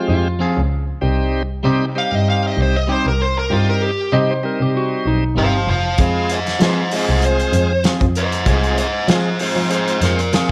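A straight-eighth soul blues groove at 97 BPM in C minor, brooding and smoky, with a bowed, reedy double bass and a shouting tonewheel organ with key click and a slow rotary speaker sitting under twangy clean guitar stabs and brief fingerpicked slide phrases. A dark, overdriven lead guitar takes the melody from 2.0 seconds, up front in a moderate club reverb, over chords moving from Fm to Cm and back to Fm. A small-room soul drum kit with a tight kick and a rolled-off top enters at 6.0 seconds of this fragment from a longer piece.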